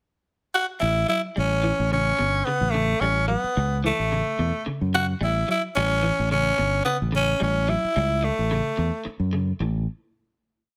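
Afrobeat at 109 BPM in A mixolydian, hypnotic and driving, with a lightly swung sixteenth feel over a single A7 groove after a short pickup. A raspy, gritty tenor saxophone sits up front from 0.5 seconds with a motif-based solo melody in song-like phrases, close-miked with light vibrato and plate reverb, while a round, punchy fingered electric bass plays a syncopated riff. In the background a clean, picked electric guitar repeats an arpeggiated ostinato through analog chorus and plate reverb, and the piece closes on a final note in a moderate studio room.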